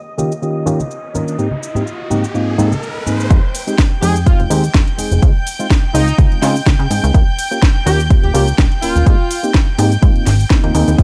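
Filtered disco house at 125 BPM in 4/4, with a swung sixteenth-note feel and a nostalgic, groovy mood, heard as a short cut from a longer piece. A reedy, worn electric piano with phaser and 12-bit sampler grit sits up front from 0.2 seconds, playing chords that move from Eb7 to Abmaj9, while an intimate, bowed chamber string section holds soft sustained chords high above, pumping and filtered. The house drum kit brings a cracking snare, bright hats, ride cymbal and cabasa, joined in the background by hard-hand tambourine and congas, as an electronic riser builds toward the drop at 3.3 seconds. There a punchy, overdriven electronic kick and a plucky, funky analog bass with a fast, decaying filter pluck arrive up front, carrying the progression through Fm7, Dbmaj7 and Eb7 back to Abmaj9. A clear, tight horn section with light vibrato and a smooth top plays the melody in a pop style, and the mix is dry and close, with only a small room ambience on the drums.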